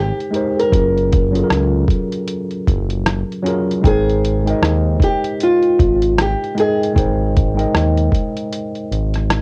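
A fingerpicked nylon-string guitar melody with audible finger squeak opens this cosy lo-fi hip hop excerpt in Ab major at 77 BPM with a 16th-note swing, alongside a worn, slightly out-of-tune tine electric piano and a smooth sawtooth-and-triangle synth bass, joined at 0.2 seconds by a muffled, pitched-down, overdriven sampler-style kit with a thumpy kick, hi-hat and rim click, all drifting between Abmaj9 and Gbmaj9 under light reverb and cassette-tape grit on the guitar, piano and drums, before a break at 8.5 seconds.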